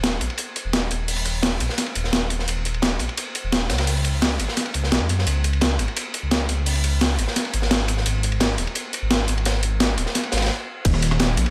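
A dark, detuned sawtooth bass sits up front from the start, its deep, rumbling tone beating against itself with a fast attack and long sustain between Eb1 and Gb2. This is a short cut from a longer liquid drum and bass piece at 172 BPM in a straight 4/4, melancholic and lush in mood. Two breakbeat kits run together throughout: a compressed, sampler-style kit, gritty and tape-tinged with a medium-tuned snare, rim clicks, hi-hats and crash, placed forward in the mix, and a saturated acoustic kit from a studio room with dark, rolled-off cymbals, ride and hats, its high-passed snare and room sound sitting mid-forward. The passage is a build-up that halts at 10.5 seconds, and a tight, layered electronic kick, re-recorded in a small room, lands up front at 10.8 seconds. Studio reverb colours the drums, and light reverb with small room ambience frames the whole.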